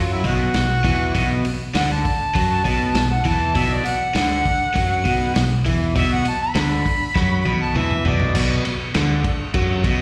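Blues rock in the power-trio and southern rock vein, this heavy, brooding fragment of a longer piece rides a straight four-beat groove in a minor key and sounds like a live gig heard through the venue's PA, with small-room and recital-hall reverb around it. A mellow harmonica carries the melody as a jazz-style solo until 8.4 seconds, its soft attack, light vibrato and scooped notes coated in overdrive and slapback echo, sitting up front yet distant and roomy. Beneath it, a double-tracked electric guitar grinds out a low picked riff, bright, compressed and overdriven, with its own slapback echo. A growly, direct-sounding fingered bass plays low in the range alongside the riff. A vintage acoustic drum kit joins at 0.2 seconds, lo-fi and muffled with a rolled-off top, a tight kick and a medium-tuned snare, and plays a fill from 7.2 seconds as the harmonica solo closes and the trio moves into a new section.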